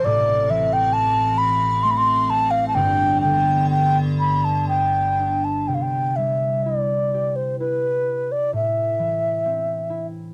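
A reedy baroque flute opens this tender, pastoral Celtic slow air, sung up front with vibrato and tongued notes, over an icy glass pad whose crystalline, airy chords carry chorus and their own reverb. A concert harp enters at 0.1 seconds, its thumb-plucked, mellow strings ringing close by in accompaniment. The piece moves in a rubato 3/4 at roughly 60-67 BPM in C major, passing through Am and G before the pad falls away at 5.7 seconds and the harmony settles on C, then Am7. Flute and harp carry the closing passage together, the harp sounding last. A moderate booth ambience and the grain of home cassette tape wrap this brief excerpt in an intimate, homespun sound.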